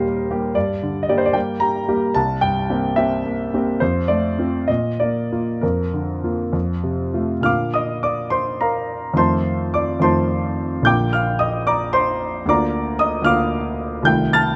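A clear, up-front concert grand piano with a deep bass and natural tone carries this lyrical, hopeful romantic character piece in Bb major, flowing in a rubato 6/8 at roughly 63-79 BPM in dotted quarters, moving from an opening phrase through Gm, C7 and F to a second passage that settles on Bb/D around 12.5 seconds, all in light reverb within a short cut from a longer work.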